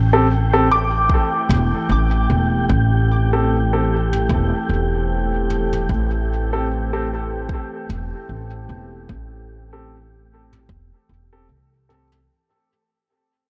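Meditative, spacious ambient dub at 75 BPM in A minor, resting on an Am7 chord, where a woody, dark upright bass sits up front beneath a warbling, nostalgic tape-like pad with chorus and reverb, an airy, breathy wind-like noise texture, clear, polished upright piano stabs through a low-pass filter and dub echo, soft, muted felt-piano arpeggios with tape echo from 0.7 to 5.9 s, a deep electronic kick and brushed toms with dub echo, all fading out across the 12.3-second clip cut from a longer piece as a filter sweep moves over the piano in a small, lightly reverberant room.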